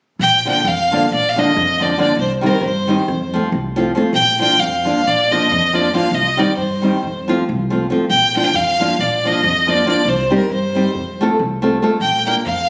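Captured on a phone in a concert hall with moderate reverb, this festive, virtuosic Balkan wedding-band excerpt in 9/8 at 274 BPM (eighths) and Bb major features an intense, bright bowed violin with vibrato singing the melody up front, a warm fingerpicked classical nylon-string guitar close by in accompaniment, and a woody, thumpy pizzicato upright bass anchoring the low end beneath a cycling Bb, Cm and F progression.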